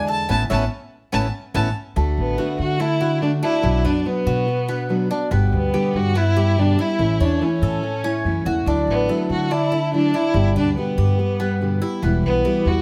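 Relaxed and warm, this Cuban son and guajira excerpt opens with a band accent from 0.3 to 2.0 seconds before settling into a gently moving progression that begins on D at 2.0 seconds. A single bowed violin carries the melody up front with smooth vibrato, over a fingerpicked plugged-in steel-string acoustic guitar accompaniment, while the Cuban tres adds bright, metallic arpeggios on its doubled strings. A woody, dark pizzicato upright bass anchors the bottom up front, and light reverb surrounds the ensemble.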